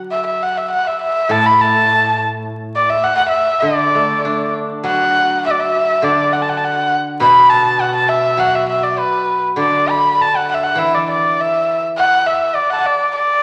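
A steel-string zither, played with fingerpicks, opens this graceful, pastoral passage of Chinese traditional music, cut from a longer piece. Its silvery, ringing accompaniment sits low beneath the melody and continues until 12.5 s. An erhu enters almost at once, carrying the tune up front with a soft attack, light vibrato and gliding portamento, its airy bowing close and intimate. The music moves in a rubato 2/4 around 102 BPM in a D gong mode, shifting to a new phrase at 4.8 s before the erhu closes alone at 13.4 s. A reverberant recital hall and a vinyl crackle give the recording a gentle, aged glow.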